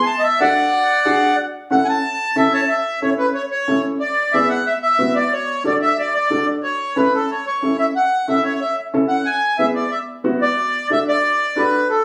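Sunny and danceable, this Latin fragment puts a reedy accordion up front, its melody carrying a slow beating shimmer, while a dark, woody upright piano with a vintage character joins at 0.4 s with mellow accompaniment. Moving through D, A and E7 chords, the pair shifts into a new section at 2.7 s, and the piano drops out at 11.8 s just before the accordion reaches the cut at 12.0 s. The sound is a phone capture in a large studio with club reverb and compression.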